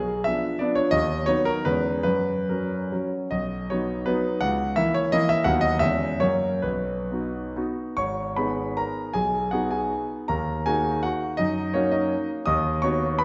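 Dotted rhythms in 3/4 drive this romantic classical dance, a proud and graceful fragment cut from a longer piece. The tempo moves freely with rubato, ranging from 126 to 187 BPM. A solo concert grand piano carries the whole passage, warm in tone with a deep bass and placed up front, spanning G#1 to D#6. The opening phrase sits in B major, starting on a Bdim7 chord and circling through F# back to B, before the music turns to G# minor at 8.0 seconds and settles on D#m and B/D# harmonies through to 13.2 seconds. A wet recital hall reverb with a 1.6-second decay gives the piano a sense of space around it.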